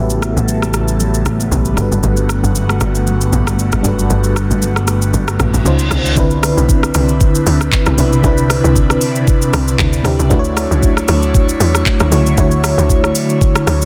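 Soulful and relaxed, this amapiano cut from a longer piece moves at 116 BPM with a gentle swing, built on a dark FM electric piano with tremolo and an airy, breathy pad that pumps with chorus and phaser over chords from A13 through Gmaj9, C#maj9, Cmaj9 and Dmaj9. A tight, punchy log drum bass and an up-front electronic R&B kit with a knocking kick, metallic hats, handclaps, rim click, shaker and a softly clipped snare carry the groove, joined at first by a bright fingered electric bass and very quiet, high-tuned congas. After the kick drops out and a reverse cymbal rises from 5.5 seconds, the congas fade just before the drop lands at 6.2 seconds, where the electric bass falls away, leaving a dense, heavily limited digital mix.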